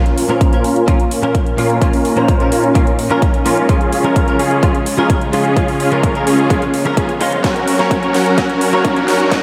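A straight 4/4 pulse at 128 BPM drives this emotional, powerful festival progressive house build-up in Bb minor, with a big-room kit of huge snare and metallic hats arriving at 0.1 seconds, followed by a punchy, overdriven electronic kick at 0.4 seconds, the drums closing on a fill from 7.4 seconds. Bright, detuned supersaw chords carry the riff up front through Bbm, Db and Gb, joined by a picked, clean electric guitar with chorus and tape echo and a dark, sul tasto string section with light vibrato, all pumping to the sidechain as filter sweeps move across the synths and strings. A very quiet riser creeps in at 4.4 seconds, and the whole passage sits in a dreamy, reverb-soaked digital hall.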